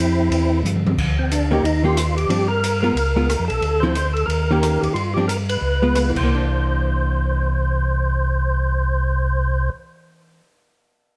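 A fat, lightly overdriven tonewheel organ with key click and third-harmonic percussion carries the melody through slow rotary speaker, chorus vibrato and plate reverb in this greasy, bluesy soul jazz organ trio fragment at 181 BPM in swung 4/4, over a round, mellow organ bass line, a clean, compressed hollow-body guitar comping from 1.5 seconds, and an acoustic drum kit with dark cymbals and a boomy kick that plays a brief fill before stopping at 6.2 seconds, set in a small room.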